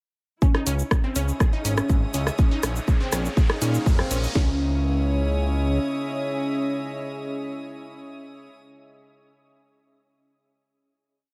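At 0.4 seconds this short, cinematic melodic techno piece opens at 122 BPM in 4/4: a punchy four-on-the-floor kick and cracking snare sit up front, a grainy tube shaker plays hand-played sixteenths, and a moment later a hat-and-rim kit adds programmed hats and backbeat. A fat, detuned sawtooth analog lead plays a repeating riff melody with vibrato and tape echo, while a rich chamber string section, bowed sul tasto with a soft attack, floats over slowly shifting chords. A bright unison pluck runs a 16-step arpeggio sequence in the background through phaser and dub echo, and a thick, wave-folded analog bass adds an off-beat line. A deep, moody ambient pad with chorus and its own reverb fills the back of the mix, and most of the melodic parts pump against the kick. The mood is melancholic as the harmony moves from C#madd9 to A#m and back, and an electronic riser builds toward 4.4 seconds. There the drums and pluck fall away and the piece settles on a final C#madd9 chord carried by the lead, pad and strings until about 8.5 seconds, all in a dry, close-sounding mix.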